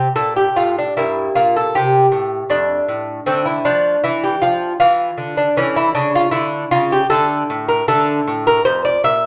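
In a rubato triple metre at 78 BPM, this grave, solemn baroque-style dance is carried by a single fingerpicked lute, bright and delicate with its doubled, partly octave-paired nylon strings, ranging from F2 to E5, placed up front in a moderately reverberant large studio across the roughly 9.3 seconds of a passage cut from a longer piece, moving through chords from F and Dm to A and back to Dm.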